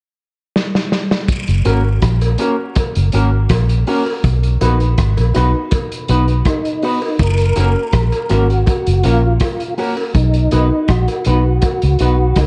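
A straight 4/4 roots reggae groove at 81 BPM in F# major opens with a drum fill on a muffled, lo-fi vintage kit with a tight kick and rim click, soon joined by a distant jawbone-type rattle and cowbell and a dark, round, punchy muted bass sitting up front. A bright, twangy electric guitar with an envelope filter, tremolo and tape echo carries the accompaniment, while a woody upright piano adds stabs in the background over a laid-back, uplifting move between F# and B. At 6.5 seconds a mellow tonewheel organ takes the melody with chorus vibrato, slow rotary speaker and tape echo, set in an echo-heavy, cassette-tape mix with small-room ambience.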